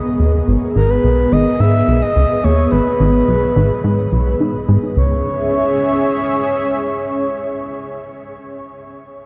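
Expansive and cosmic, this fragment of ambient, sequencer-driven space music moves at 107 BPM in a straight 4/4, centered on C# minor and tuned to A4 = 439 Hz. A sweeping resonant pad holds sustained chords from the start, its evolving, full-bodied tone shaded with chorus, while a plucky analog bass sets a punchy, funky riff in the low register from 0.2 to 5.2 seconds, colored by analog chorus and delay. From 0.8 seconds a breathy, flute-like synth lead carries a soft melody with vibrato, chorus and delay. The harmony rests on G#m before shifting to C#m at 5.0 seconds, where the music moves into a new section. A huge, wet reverb with a 7.8-second tail places the parts in a vast, echoing space, giving the short passage its spacious character.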